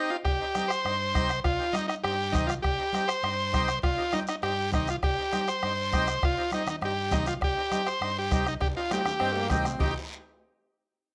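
A vintage, reedy combo organ carries the melody up front in this fiery, passionate cumbia at 201 BPM in C minor, over full, airy accordion chords, a dark, round fingered electric bass, a close, dry bombo, ringing congas, very quiet distant cowbell and timbales and a raspy background guiro, with a drum fill from 8.6 seconds and a clear tenor saxophone entering in the background at 9.2 seconds, all in a rough home demo mix.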